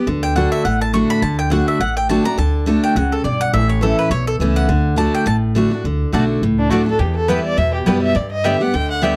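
This dry, close-sounding studio recording has an intimate 1970s feel, and it opens partway through a longer bluegrass piece. The mood is joyful and rustic, with a brisk swung lilt. A bright, full-bodied steel-string acoustic guitar sits up front, picking the accompaniment, while a growly, thumpy upright bass anchors the low end. The mandolin takes a solo through the first 5.8 seconds, its picked double strings sounding woody and close, over chords that move from D to A and back to D. At 6.6 seconds a warm bowed fiddle enters with the melody, touched by tape echo, light vibrato and portamento, as the harmony shifts to Em and then G.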